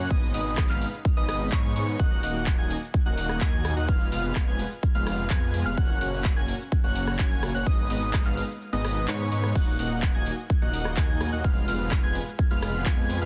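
A punchy, up-front electronic kick drives this euphoric, powerful festival progressive house excerpt, dropping out briefly between 8.6 and 9.6 seconds, while a tape-toned house kit of cabasa, crash cymbal, handclaps, hi-hat and rim click, re-recorded in a small room, fills in around it. A huge, airy supersaw riff with a sub octave and vibrato pumps with sidechain and digital delay, and a catchy plucky unison lead spins high arpeggios through the same delay and pumping, its sound shaped by a filter sweep. Underneath, a lush, saturated detuned saw bass with chorus carries the Abm, Ebm, Fdim and Gb progression, all set in digital ambience with a dense, heavily limited modern master.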